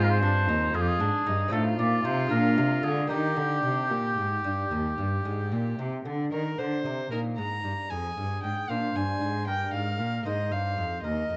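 A rich, nasal gut-string cello sits up front in this radiant, dance-like baroque-style sonata movement in 12/8, carrying the bass line with a light vibrato and a reedy, period-style bow. Above it, a solo oboe sings the melody in a warm, roomy classical voice. A single bowed violin with a gut-string tone weaves a second line that climbs higher than the oboe. A delicate fingerpicked lute with doubled gut strings fills in the continuo accompaniment. The harmony moves from F minor through B-flat seventh colours to settle on E-flat, and a second section begins at 6.3 seconds before the passage, cut from a longer piece, ends at 11.4 seconds. Close, detailed microphones and a light reverb give the ensemble an intimate, finely etched sound.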